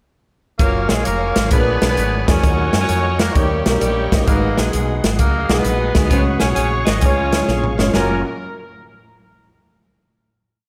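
A swung, driving two-beat praise groove opens this short, uplifting and reverent uptempo gospel piece at 0.6 s, with the big-band drum kit up front, its punchy kick and medium-tuned snare sounding airy and polished alongside hi-hat and toms. A dark, round fretless electric bass walks and runs beneath it with chromatic approach notes, while a slightly detuned upright piano pushes short, woody chords in drop-2 voicings decorated with grace notes. Further back, a reedy tonewheel organ holds a sustained pad with key click, chorus vibrato and a slow rotary speaker. A tight, distant horn section with light vibrato and tape echo carries song-like motifs in a jazz style, alongside a gritty, raspy tenor saxophone playing pop-style solo phrases. The whole verse moves through a gospel progression in a moderate recital hall, and a drum fill at 7.5 s leads into a final held chord at 7.9 s.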